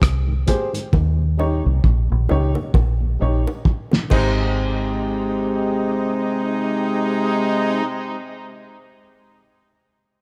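A slow, swung 4/4 groove at 66 BPM anchors this sunny, uplifting roots reggae passage in Ab major, cut from a longer piece. A cloth-damped, thuddy drum kit sits up front with a fat snare, tight kick, rim clicks, hi-hat and dark, muffled crash cymbal. Its gritty, saturated lo-fi tone carries through a drum fill before the kit drops out at 4.4 seconds. The deep, round fingered electric bass, foam-muted and punchy, holds the low end throughout, while tight, high-tuned bongos add close percussion. A mellow tonewheel organ turns through slow rotary speaker, chorus vibrato and tape echo, and a woody, slightly detuned upright piano plays boxy stabs. At 4.1 seconds a warm horn section enters with a punchy second line carrying light vibrato and tape echo, as the chords move from Abmaj7 to Eb7 and back to Abmaj7 under light reverb.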